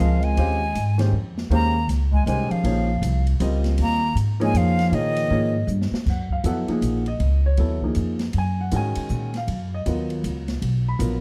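The woody upright bass is plucked on steel strings and sits up front, anchoring this spiritual, open modal jazz passage, cut from a longer piece. It moves in a swung 3/4 at 158 BPM. A breathy, bright metal flute carries the melody with vibrato and a soft attack, close-miked and expressive, while a clear bass clarinet adds a second line with vibrato and scooped notes; both play until 5.7 s. A present grand piano accompanies throughout, voicing Eb9sus4 in Eb mixolydian, then F#maj9 when the music shifts to F# major at 6.1 s, and later Bmaj7(no3). The acoustic drum kit, heard lower in the mix in a studio room with dark cymbals, a medium-tuned snare and a boomy kick, plays ride, hi-hat, crash, snare and kick, and takes a fill at 5.7 s leading into the second section. Light reverb and a warm production frame the whole ensemble.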